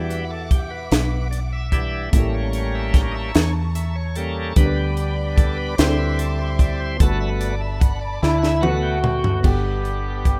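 A slow gospel sway in 6/8 at 49 BPM carries this hopeful, jubilant excerpt in G major, where a bright, shouting tonewheel organ with overdrive and slow rotary speaker solos over dark upright piano, a punchy fingered electric bass, lush distant strings and a crisp fusion drum kit with a high-tuned snare that plays a fill from 8.2 seconds, when a clear grand piano with slapback echo and a loose, roomy horn section take up the melody, all in a dry, rough home demo mix moving from Em9 through A7b9 and D9sus4 to Gmaj9.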